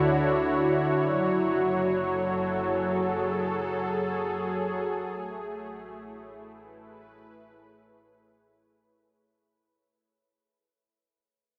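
A smooth, detuned sawtooth analog pad with a soft attack, long release and chorus sits up front in this serene, weightless ambient fragment in free time, sustaining chords that move from Dmaj9 to F#madd9 at 1.1 seconds and Amaj7 at 5.1 seconds, while an earthy, bowed chamber double bass section with light vibrato stays in the background and fades out with the rest of the music across its 9.2 seconds, the whole sound steeped in a huge, wet reverb within a dark, warm production.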